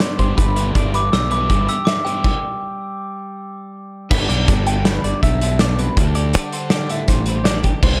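Intricate and bright, this math rock and Midwest emo passage at 161 BPM in 5/4 and G major pairs a phased, compressed clean electric guitar's arpeggios with a background twelve-string electric guitar's accompaniment, a double-tracked crunchy overdriven guitar riff, a fuzzy up-front fingered bass and a loose, punchy drum kit with dark cymbals in a small room, while a bell-like glockenspiel played with hard plastic mallets rings out a melody through analog delay from 1.0 s, before a stop at 2.3 s gives way to a second section moving from G to D7sus4.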